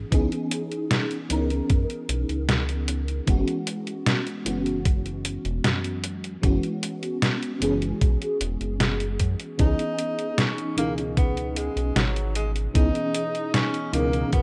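A thumpy, sampler-style electronic kick sits up front in a straight four-four groove alongside a detuned 8-bit drum machine supplying hi-hat and a medium-tuned snare, both drum parts carrying a tape-softened, small-room character. This woozy, nostalgic vaporwave piece is cut from a longer work, and its harmony drifts from C#m9 to F#9sus4 and back to C#m9. An FM electric piano layered with a soft pad carries the accompaniment, sounding lush, dreamy and full-bodied, with a dark, decaying tone that is thickened by ensemble chorus, cassette tape coloring and analog delay. Beneath it, a chorused synth bass offers a glossy, evolving, retro tone built from pulse and sawtooth waves with a moving notch, dark and sustained. At 9.6 s a distant, roomy tenor saxophone enters with a jazz-style solo full of vibrato and scooped notes, its warm voice trailed by tape echo. The whole mix has the rough feel of a home demo on cassette, bathed in light reverb.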